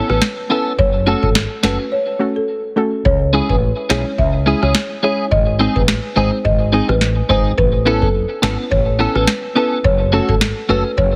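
Heavily compressed with a radio-like sheen, light reverb and digital ambience, this bouncy, hypnotic dancehall excerpt in C# minor moves at 106 BPM with a gentle sixteenth-note swing: a booming analog drum machine with deep kick, tonal snare and rim click sits up front beside a woody, punchy fretless bass, while a dark, soft pluck with sidechain pumping and chorus carries the accompaniment, a bright, clean guitar plays arpeggios through analog chorus and tape echo, and a mellow, rustic marimba with soft mallets sings the melody through its own tape echo, all over an opening break that gives way at 3.1 seconds to a cycle of C#m, G#, Aadd9 and F#m.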